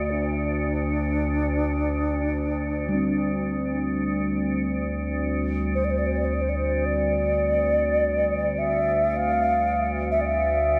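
A mellow, wooden-headed alto flute carries the melody across a range of D4 to F5, its pure tone shaped by vibrato, a crisp attack and rolled-off highs, with a delay trailing its expressive phrases. Beneath it, an icy glass pad holds a drone on D2 throughout, airy and crystalline, its slow attack and long release thickened by chorus and its own reverb. Between 2.9 and 5.1 seconds a bronze singing bowl struck with a felt mallet adds a ringing, metallic texture from G3 to D4, its slow beating soft and mid-forward. This world meditation music moves in free time in D minor, with a haunting, spacious mood. A huge ambient reverb with a long 8.5-second tail bathes the sound in this short cut from a longer piece.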